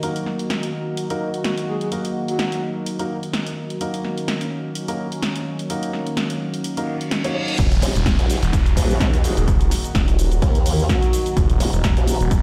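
This gritty, aggressive bass house excerpt sounds like a big sound system playing in a bare stone room, with light reverb and a digital ambience around it. At 127 BPM in 4/4 with a 55% swing on the sixteenths, it opens in Eb minor on a sweeping, resonant pad of evolving, bright sustained chords, a deep, moody ambient pad in the background, and a house kit of punchy snare, hi-hat and shaker. A baby grand piano adds natural-sounding stabs with delay until 7.5 s, and a soft, breathy flute-like synth lead floats a brief melody through lush chorus. A reverse cymbal and downlifter enter at 6.9 s, leading into the drop at 7.6 s, where a punchy, tape-warm electronic kick lands with a thick, swirling phased saw bass, overdriven and up front on Eb1. A wobbling formant-sweep bass with tube saturation joins just after, both basses pumping with the sidechain, while the flute-like lead returns over the drop.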